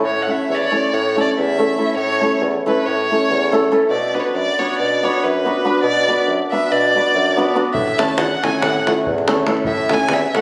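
Wild and virtuosic, this Balkan wedding-band excerpt in 9/8 sets a dark, close, vibrato-laden violin singing with portamento over a shimmering, ringing hammered dulcimer and a warm bassoon bass line, moving from A to Bm and back before a tight davul enters at 7.7 seconds, all heard through a moderate recital-hall reverb with the phone-in-the-room sound of the recording.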